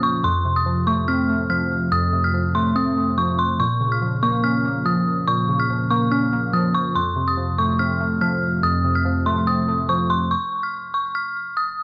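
The rhythm sits in a half-time 4/4 feel at 143 BPM, giving this tense, dark hip hop excerpt a slow, heavy sway even at a quick pulse. A detuned synth bell carries the melody high up, from C6 to F6, its eerie, inharmonic FM tone striking sharply and then decaying, thickened with chorus and delay and placed up front. Beneath it, warbly lo-fi synth keys supply the accompaniment from F2 to Db4, a nostalgic, mellow blend of detuned sawtooth, triangle and square waves with a sub octave, ring modulation, a filter sweep and chorus. The keys move through F, Bb minor and back to F before stopping at 10.3 seconds, leaving the bell alone with unaccompanied space until the clip ends at 11.8 seconds. Light reverb and a digital ambience surround a dark production, with a faint mains hum lingering in the background.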